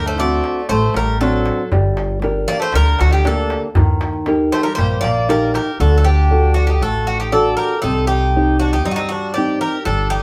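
Greek folk in a brooding, moody vein, this short cut from a longer piece moves at 118 BPM in a straight 4/4, set in D phrygian dominant with tuning slightly below standard pitch. A picked bouzouki carries the melody up front, its metallic double strings ringing with some octave doubling, while a second bouzouki plays a supporting line lower in the mix. A dark, thumb-plucked flamenco guitar fills out the accompaniment, and a growly, woody upright bass sits forward, its pizzicato steel strings giving the low end weight. A crisp, deep darbuka with a metal shell and hard-handed strokes sits in the background, playing from the start until about 5.7 seconds, just before the second section begins at 5.8 seconds. The harmony moves from D7 through Gm and Eb before settling on D and Cm, and the band sounds like it is playing live together in one room with moderate reverb.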